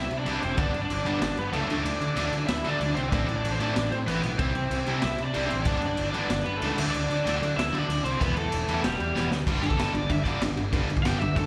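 Heard live through a venue's PA with a light recital-hall reverb, this punk rock excerpt is urgent and angry. It runs at 189 BPM in a straight 4/4, with the drums in a half-time feel until 9.5 seconds. The raw garage drum kit sits up front with a saturated, gritty small-room sound, pairing dark cymbals and a medium-tuned snare with a punchy kick, and a fill arrives at 9.2 seconds. A crunchy overdriven guitar carries the melody with a bright, picked tone and slapback echo, while a double-tracked distorted electric guitar plays the riff, overdriven and echoed as well. Underneath, a fuzz-laden picked bass adds a round, direct-and-amped weight. The chords cycle through C, G, D and Am, then C, G, D and Em, before landing on G5 as an overdriven guitar solo begins for the closing moments of this fragment cut from a longer piece.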